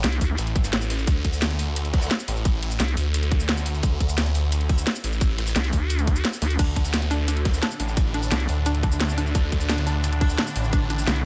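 A close, small-room ambience frames this tense, dark slice of technical drum and bass, cut from a longer piece. Up front, a thick, swirling detuned saw bass carries the low end through a phaser and tube saturation, while a nasal, resonant wobble bass with a formant-filter vowel sweep and chorus breaks in for brief bursts, most notably from 5.6 to 8.5 seconds. The drums stack a tight, overdriven electronic kick with a produced kit of cracking snare, bright hats, crash and shaker, bathed in studio reverb. Beneath them, a very quiet acoustic breakbeat kit adds gritty, rolled-off texture with dark cymbals and a medium-tuned snare. From 6.6 seconds, a warbling, lo-fi pluck spins mellow arpeggios through chorus, tape echo and sidechain pumping. At 7.7 seconds, a granular, evolving drone swarms in the background with a slow attack and its own reverb, breathing with sidechain pumping.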